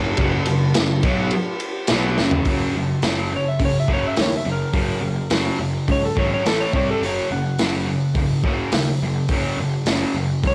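Garage rock at 105 BPM with a raw, swaggering mood, built on a double-tracked fuzz guitar riff and a growly, punchy fuzz bass that both start at 0.0 seconds, with a crunchy breakbeat kit of dark cymbals and a tight kick joining at 0.2 seconds and playing a fill at 2.2 seconds that leads into the shift at 2.5 seconds. At 3.4 seconds a clean, dark lap steel enters with a fingered slide melody and volume swells, riding over the gritty, saturated drums and bright distorted guitar. The chords move from F# toward A and C before returning to F#, and the whole piece carries the light reverb and tape grain of a cassette home recording, heard as a section cut from a longer piece.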